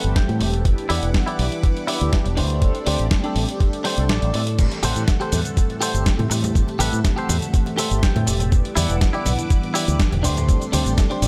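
A dry, echo-heavy mix frames this sleek, sensual nu-disco excerpt in A dorian at 122 BPM, where a thumpy, up-front electronic kick (briefly dropping out at 4.1 s) and a gritty, tape-warm sampler-style kit with medium-tuned snare, hi-hat, shaker and crash sit alongside a punchy envelope-filtered fingered bass, while a twangy clean electric guitar plays a chorused, echoing riff with short fills, round detuned synth brass adds phased accompaniment, a lush string machine pumps softly in the background on sustained Am7, Em7 and D7sus4 chords, and very quiet hard-hand congas join at 4.8 s.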